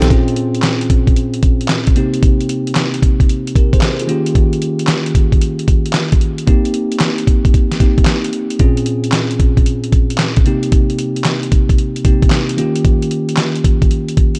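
New jack swing R&B at 113 BPM in Bb dorian, this slick, bouncy clip rides a heavy 16th-note swing over a cycle of Bbm7, Cm7 and Eb7. A bell-like tine electric piano plays clean, direct chords up front. Beside it, a compressed, sampler-style drum kit carries vintage 12-bit grit, with a thumpy kick, fat snare, handclaps and hi-hat, all inside a dark, dry mix.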